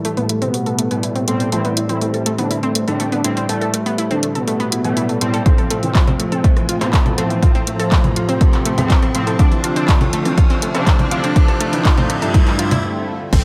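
A moderate digital room reverb gives this driving, dramatic melodic techno cut, taken from a longer piece, a shared ambience at 122 BPM in straight 4/4. A juicy, detuned resonant polysynth carries the melody with chorus, tape echo and sidechain pumping. Alongside it sit an edgy sync-sweep polysynth playing stabs with a cassette-tape tint, a round, warbling analog pluck spinning filter-swept arpeggios, and a very quiet, evolving pad holding sustained chords over Am7, F and Dm7. A deep house kit of congas, handclaps, rim clicks, dark hats and crash pumps throughout, and background effects enter at 3.8 seconds with a riser and then a swell. A punchy, up-front electronic kick lands at 5.5 seconds. The whole passage works as a build-up toward a short break near the end, where a tight, nasal sequencer bass appears on A1 at 13.3 seconds.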